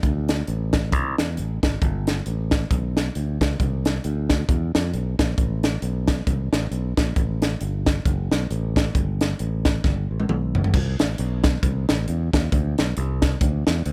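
This uptempo gospel groove moves at 135 BPM in 4/4, with a lightly swung eighth-note feel that gives it a buoyant, hopeful lift. A crisp fusion drum kit drives the whole cut, its high-tuned snare and punchy kick sitting up front while crash cymbal, hi-hat and toms fill out the small, pumping room sound. A fingered electric bass plays throughout, bright and growly, its direct, amped tone ranging from F#1 to F2 in C major. A drum fill from 9.8 to 10.7 seconds marks the turn into a new section at 10.7 seconds, carrying the jubilant energy forward. The sound is dry and close, with little reverb, and the cut is taken from a longer piece.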